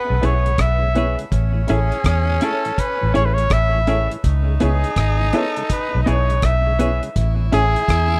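Serious and laid-back, this short roots reggae excerpt moves at an unhurried 82 BPM in C# minor, with a swung sixteenth-note feel over chords that alternate between C#m7 and Amaj7. A clear, up-front flugelhorn carries the melody, joined by a breathy, raspy tenor saxophone with vibrato on a lower second line, both trailed by tape echo. Anchoring the groove is a dark, round, foam-muted fingered electric bass sitting prominently in the mix, while a dry, dark reggae drum kit with a tight kick, hi-hat and rim click provides a smooth, rolled-off backbone. In the background, a compressed clean electric guitar with tremolo and tape echo adds accompaniment, a worn, woody, slightly detuned upright piano punctuates with stabs, and a very quiet, mellow tonewheel organ with key click and slow rotary speaker fills in underneath. The sound is close and dry, with the rough character of a home demo mix.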